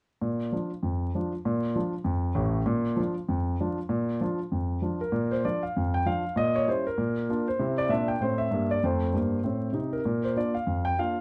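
A dark, mellow concert grand piano opens at 0.2 seconds, playing alone in a playful stride jazz style with a lively swing. The piano sits up front with deep bass and audible action noise, which gives the playing an intimate, vintage character. The harmony stays close to home, passing briefly through a diminished chord before moving on toward the dominant and settling back by 10.0 seconds. A moderate club reverb surrounds the piano, while a layer of vinyl crackle adds to the old-record atmosphere. This short excerpt, cut from a longer piece, ends at 11.2 seconds.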